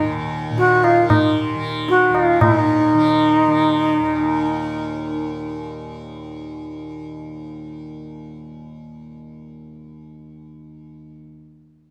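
Longing and meditative, this short fragment of Hindustani classical music moves at 114 BPM in a straight 4/4, tuned slightly below standard pitch with A at 435 Hz. A breathy, mellow bansuri carries the melody up front, its bamboo tone soft at the top, with vibrato and tongued notes moving between Eb4 and Gb4, dressed in plate reverb and tape echo until it falls away at 5.3 seconds. Beneath it, a tanpura drone spans Eb2 to Eb3, softly plucked with a buzzing, shimmering brightness, and continues alone until 11.2 seconds. A high-tuned, ringing tabla appears only briefly, from 0.6 to 2.6 seconds. The parts sit in a moderate small room with a short reverb tail, giving the fragment an intimate, close feel as it passes from its opening phrase into a second passage at 2.4 seconds.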